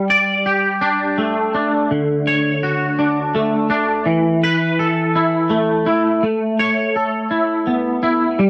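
A clean, twangy electric guitar plays alone and up front through an ensemble chorus in this wistful, jangly rock fragment in a slow 6/8 at 55 BPM (dotted quarters), moving through Gsus2, Dmaj7, Esus4 and Aadd9 over 8.5 seconds with a dry, close, 1970s-style studio sound.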